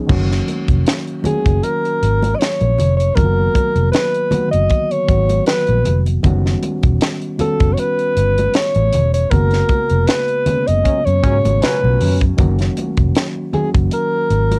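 Heard through the soft reverb and faint cassette softness of a home recording, this lush, warm 1970s-style soul excerpt sets a reedy electric piano, a dark, foam-muted fingered electric bass, a tight, up-front funk kit with a high-tuned snare, and ringing congas in the background under a breathy, mellow alto saxophone melody that enters at 1.3 seconds, while a band accent from 9.3 seconds brings in brief, bright trombone section stabs with analog delay at 10.8 seconds.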